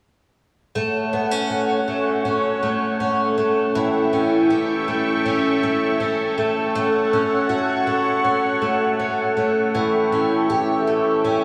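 A picked twelve-string acoustic guitar sits up front in this blissful, ethereal dream pop fragment, playing arpeggios from 0.8 to 11.4 s in a bright, boxy, octave-doubled tone that shimmers through lush chorus and analog delay, with a touch of finger squeak. Alongside it, a phased analog pad, also up front, holds sustained chords over the same span, its detuned sawtooth sound swirling and evolving with a soft attack, colored by phaser and chorus. The straight 4/4 feel moves gently through a simple cycle, alternating between A6 and A7 every few seconds. Both parts are soaked in a cathedral reverb with a 7.0-second decay, blended with a small room ambience, giving the mix a floating, dreamy haze. The result feels suspended and weightless, like a brief glimpse lifted from a longer piece.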